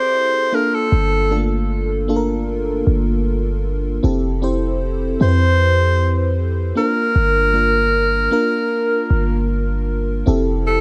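A small room reverb frames this dreamy, smooth contemporary R&B excerpt at 77 BPM in 4/4, moving between Fmaj7 and G minor chords. A lush FM electric piano layered with a soft pad shimmers with chorus as accompaniment, and at 0.9 s a deep, boomy 808-style bass arrives underneath. Up front, a breathy alto saxophone carries the melody in a whispered, jazz-style subtone with light vibrato, its notes trailed by tape echo.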